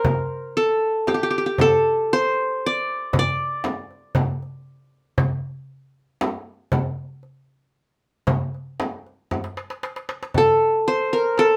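Melancholic and hypnotic, this short excerpt from a Turkish makam ensemble moves at 116 BPM in a straight 10/8, with a bright-edged, plectrum-plucked qanun carrying the melody up front between G4 and D5, its triple strings ringing in a moderate studio reverb. Beneath it a crisp metal-shelled darbuka, close and dry and struck with hard hands, sits forward in the mix, while a deep, large frame drum with a compressed, saturated tone plays until 10.6 seconds. A drum fill from 9.3 to 10.3 seconds leads into a new section that closes the passage at 11.6 seconds.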